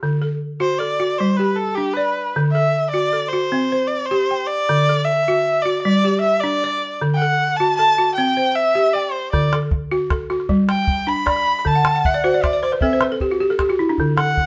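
Recorded live in one room with moderate studio reverb, this joyful, hypnotic excerpt of West African string and xylophone music in 12/8 at 103 BPM and D mixolydian opens with an up-front, woody, buzzing balafon played with hard rubber mallets in arpeggios over D, G and C chords, joined at 0.6 seconds by a rich, bowed erhu soloing with vibrato and portamento, while a small, close, dry calabash enters at 9.3 seconds and the balafon adds a fill from 11.8 seconds.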